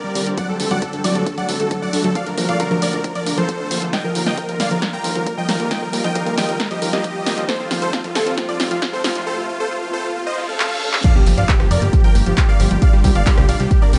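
Over a straight 4/4 pulse, this soaring, emotional uplifting trance excerpt builds for its first 11 seconds, with huge, lush detuned supersaw chords carrying the melody through sidechain pumping and dub echo, a very quiet, brilliant baby grand piano playing a second line with audible action noise, and a round analog pluck spinning arpeggios under a filter sweep and chorus. Beneath them sit a fat, saturated sawtooth bass in the background, a punchy analog drum machine with crash, handclaps, hi-hat, rim click and snare playing fills, and a heavy, tape-tinged layered kick held up front. A reverse cymbal and riser lead into the drop at 11.0 seconds, where an impact lands and the chords move to a minor seventh, all within a dark production bathed in light reverb.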